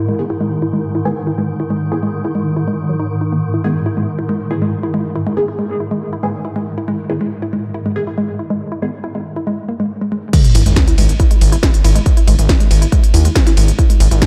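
A woody, wave-folded pluck riff with chorus, tube saturation and analog delay leads this hypnotic, driving peak-time techno excerpt over a swarming, detuned drone and muted, nasal dub chord stabs with phaser, the three pumping against the sidechain beneath a filter sweep, until the drop at 10.3 s brings in a distorted, up-front electronic kick, a tape-toned techno kit of cracking snare, smooth hats, ride and crash, and a background sub drop, joined moments later by a gritty, saturated sawtooth bass, all set in light digital ambience.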